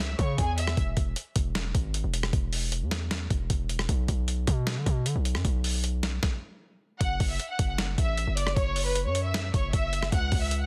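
A half-time trap groove rides on a gritty, pitched-down sampler-style drum kit, with a thumpy kick, a medium-tuned snare given soft clipping, hi-hat and rim click. Beneath it sits a punchy, heavy 808-style bass with a sine tone and a noise layer, both parts up front in a dense, dry, heavily limited mix. This melancholic, hard-hitting hip hop cut opens with a brief, lush bowed violin section line, then settles into a break of drums and bass that halts at 6.2 seconds, before the low-pass-filtered, distant-sounding violins return at 7.0 seconds with expressive vibrato.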